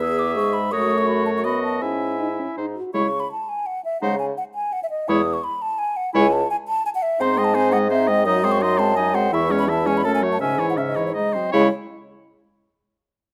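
A hollow, close-miked concert flute with vibrato carries the melody up front in this stormy, dramatic fragment of a quick classical-period movement for wind quintet in triple time, played with rubato. A clear oboe with light vibrato sings a second line beneath it, while a distant, roomy clarinet and a dark French horn fill out the accompaniment and a mellow bassoon holds the bass prominently. All five play together for the full 11.7 seconds, caught by close, detailed microphones in a large studio with moderate reverb.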